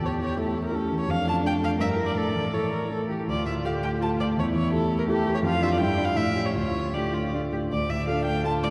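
A pure, floating violin carries the melody up front, bowed sul tasto with a soft attack, entering at 0.1 s in a quick, stormy classical-period movement for piano trio in D minor, at 166 BPM in 3/4 with a restless rubato feel. Beneath it, a mellow, vintage concert grand with deep bass and audible action noise supplies the accompaniment, while an intimate, close cello adds a dark second line with vibrato and an airy bow. Cut from a longer piece, the passage turns between A and D minor harmonies inside a wet church reverb, giving the dark, warm production a cavernous glow.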